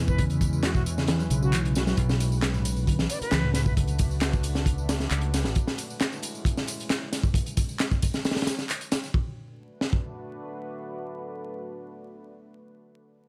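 A crunchy, saturated breakbeat kit drives this straight 4/4 groove at 134 BPM, with a punchy kick, a high-tuned snare and hi-hats sitting up front under a rolled-off top, while a tape-toned house kit layers handclaps, ride cymbal and tambourine further back. The mood is swaggering and gritty, set in B dorian and moving between C#m7 and Bm7, all dusted with vinyl crackle and small room ambience. A direct, up-front fingered electric bass anchors the low end, and a reedy electric piano riff with fast tremolo and 12-bit sampler grit murmurs in the background until 3.8 s. Over the top, an airy, expressive concert flute with vibrato carries the melody through an AM radio filter and dub echo in the opening seconds. A deep, moody pad of detuned sawtooth and sine layers with a sub octave holds sustained chords throughout, pumping against the beat with chorus, reverb and sampler grit. The bass drops out at 5.5 s, and once the drums stop at 10.0 s the evolving pad carries this cut-down passage alone.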